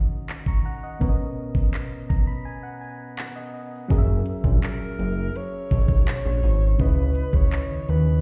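Late-night and moody, this contemporary R&B fragment at 83 BPM opens on soft, round synth keys with a warbling chorus over D#m7 and Bmaj7, joined at 0.3 seconds by an up-front electronic drum kit with knocking kick, metallic hi-hat and handclaps, before a fat sawtooth analog bass with a filter sweep arrives at 3.9 seconds as the chords move to F#7 and C#m7, and a mellow alto saxophone with vibrato and tape echo takes the melody at 4.6 seconds, all heard muffled as if through a wall in a stone room.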